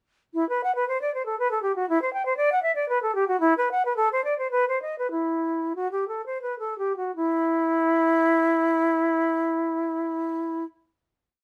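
A light reverb surrounds this short, complete classical piece, with the flute placed up front yet carrying a faintly distant air. It is a baroque-style fantasia for unaccompanied silver concert flute in E minor, tuned to A4 = 438 Hz, with a grave yet flowing mood. The music moves in 3/4 with a rubato feel, its tempo ranging between 80 and 122 BPM, and it gradually slows down between 2.6 and 7.1 seconds. The flute's airy, metallic tone carries vibrato and tongued notes as it spins broken-chord figuration between E4 and G5. At 7.1 seconds the opening section gives way to a final chord, and the flute's last sound ends at 10.6 seconds.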